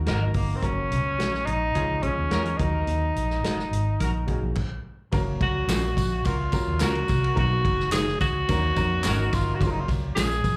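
A straight 4/4 groove at 107 BPM drives this danceable, uptempo 1960s-style soul passage in F# major, cut from a longer piece. A vintage drum kit with a punchy kick and dark cymbals anchors the beat, while a round, foam-muted fingered electric bass sits up front. A breathy tenor saxophone carries the melody with a whispered, intimate subtone, scooped notes and vibrato. Behind it, a tight, dark horn section plays a second line, a woody, boxy upright piano fills in accompaniment, and a slightly broken-up electric guitar adds stabs in the background, all three touched with slapback echo. After a brief stop from 4.6 to 5.1 seconds, the second section opens on F#maj7 and brings in a compressed, saturated layer of tambourine, egg shaker and group handclaps. The whole band comes across as a live gig heard through the venue's PA, carrying only a light club reverb.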